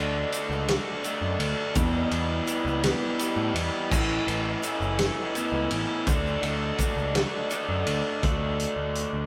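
In 6/8 at 56 BPM counted in dotted quarters, this upbeat, jangly indie rock piece moves with a straight, unhurried sway in D major. A crunchy overdriven guitar sits up front with a bright, picked riff, joined across the same range by a second electric guitar through a small old amp, whose slightly broken-up, compressed, lo-fi tone adds a warm haze. A growling picked bass, overdriven and heard both direct and amped, holds the low end. A loose acoustic drum kit enters at 0.3 s with a fat snare, punchy kick, gritty saturation and a rolled-off top across crash, ride and hi-hat, while a grainy, mellow tube shaker stays close yet in the background until 7.7 s. The chords pass from Dmaj7 through Em and Aadd9 back to Dmaj7, arriving on a plain D at 8.2 s, and the band sounds as if playing live together in one stone room with moderate reverb.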